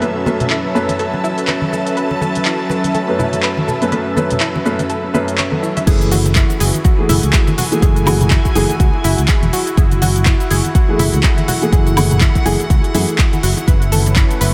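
A deep, up-front electronic kick drum arrives at 5.9 seconds, joined by a growly, tube-saturated fingered electric bass as this moody deep house excerpt drops into its fuller second half at 123 BPM in F# minor, with a 16th-note swing. From the start, a felt-muted upright piano plays soft, boxy stabs with audible action noise and short sustain until 13.2 seconds, under a smooth, detuned analog pad of sustained chords and a round, bright analog pluck playing arpeggios in the background. A layered electronic drum kit with low-passed smooth hats, handclaps, shaker, woodblock and crash cymbal sits beside ringing acoustic congas set back in the mix. An intimate chamber string section bowing sul tasto with light vibrato adds texture throughout, while a very quiet, shimmering string machine holds a violin tone only in the opening. Sidechain pumping runs through the pad, pluck, piano, strings, congas and bass, and a moderate cathedral reverb gives the whole track a dreamy, reverb-soaked glow as the harmony moves from Aadd9/F# to F#m9 and back to Aadd9.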